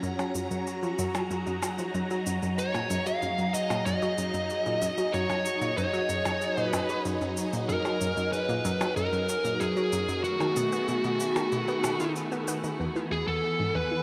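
Swirling, phased string-machine chords and a round, nasal analog pluck riff open this luminous, cosmic stretch of sequencer-driven space music alongside delayed cabasa and percussion blips and a very quiet pulsing gated texture, before a dark, distorted fuzz lead guitar enters up front at 2.6 seconds, all set in a lush hall reverb as the harmony moves from F# to B7 and settles on E at 12.8 seconds.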